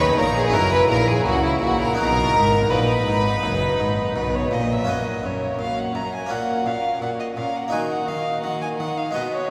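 This festive, lively baroque-style concerto movement opens in B major at 84 BPM, with a rich, close solo violin carrying the melody up front while a soft-toned, intimate chamber violin section also plays the melody in the background and a very quiet, lush symphonic violin section sings a second line. A bright, Italian-style harpsichord and a distant viola section fill in the accompaniment, over a bowed chamber double bass section that stops at 4.9 s as the music moves to F# major, and a smooth studio cello section that carries the bass until 9.2 s. A long cathedral reverb bathes the sound of this church or concert hall recording, which is cut from a longer piece.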